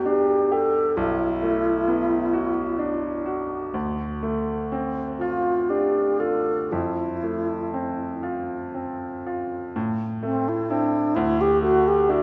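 Classical impressionist music for alto flute and grand piano unfolds in a wistful, hazy mood, moving slowly and freely in rubato at about 38-44 beats per minute in 6/8, tuned to A4 = 445 Hz. The mellow alto flute carries the melody throughout, its pure tone shaded with vibrato and shaped by a soft attack. Beneath it, the grand piano provides accompaniment from a deep bass register up into the middle range, its sound clear, smooth and vintage in character. Both instruments sit up front, with the flute a little more prominent, and a moderate concert hall reverb surrounds them. The harmony drifts through Em7, Bm7, Dm7 and Fmaj7 before a new section begins at 9.7 seconds on Am, then moves to Dsus2 as this fragment of a longer piece closes at 12.2 seconds.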